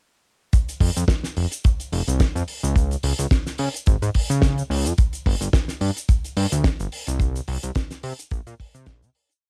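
A sleek, cosmic nu-disco piece in F minor at 108 BPM, with a light swing on the sixteenths, that sits in a drop from 0.5 seconds before fading out from 6.5 to 9.4 seconds. A tight, up-front kick pounds four-on-the-floor alongside a damped 70s kit of fat snare on the disco backbeat, closed and open hi-hat and shaker, both touched with small room reverb and a cassette-tape color. Over them a thick, detuned sawtooth analog bass with a filter sweep drives a funky syncopated line from F1 to Db3, and the whole piece carries the feel of a home cassette recording.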